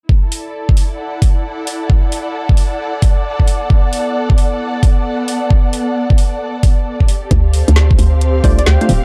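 Moody and soulful, this short cut from a longer two-step UK garage track swings at 133 BPM in E minor, moving from E9sus4 to Dm7. A bowed, lush studio string section and a silky string machine in the background both pump against an up-front, knocking electronic kick, while a garage kit adds woody snare and metallic hats. A hollow, bouncy FM bass arrives at 7.3 seconds, and at 8.4 seconds a glassy, detuned wavetable pluck with chorus and delay joins a percussive organ-like stab, all set in light digital reverb with a dark, warm production.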